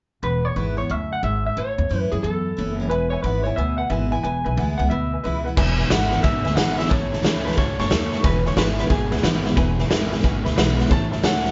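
A swung 4/4 groove at 180 BPM drives this rowdy, rollicking rockabilly cut in E mixolydian, where a twangy, slightly broken-up electric guitar through a small old amp carries the melody up front over a full-bodied jumbo steel-string acoustic guitar and a thumpy, woody pizzicato upright bass on gut strings, with a detuned, jangly honky-tonk upright piano tucked low in the mix from 2.9 seconds and a gritty, saturated garage drum kit with a tight kick and medium-tuned snare crashing in at 5.6 seconds, all played live in one room with light reverb and a dark, rolled-off top end.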